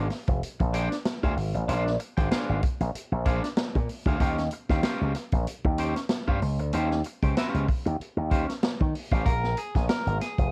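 A slap bass run through an envelope filter sits up front in this energetic, funky groove at 95 BPM in 4/4, its bright, punchy, direct-and-amped tone carrying the low end from F1 to Eb3. A swinging big-band drum kit drives alongside it with hi-hat, a punchy kick and a medium-tuned snare, sounding natural and acoustic in a studio room. An electric guitar at the edge of break-up fills out the accompaniment with a fingered, twangy, slightly broken-up voice in a warm register between Db4 and G5. The harmony moves from Bb9 to Eb13 at 4.2 seconds, and at 9.3 seconds a new section begins as a clean electric guitar solo steps in. The recording is dry and cut from a longer piece, with the character of a home recording on cassette.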